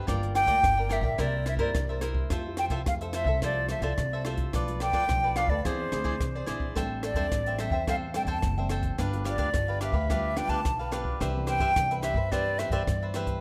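An airy silver concert flute sits up front, carrying the melody with expressive vibrato, a soft attack and lifted highs through this playful, sunny samba and choro excerpt in C major at 108 BPM. Crisp picked cavaquinho and a thumb-plucked classical nylon-string guitar in the background supply the accompaniment, while a woody, growly pizzicato upright bass and a dry compact cocktail kit, with punchy kick, hi-hat and rim click, hold down the groove. The rough home demo mix carries a moderate plate reverb and small room ambience.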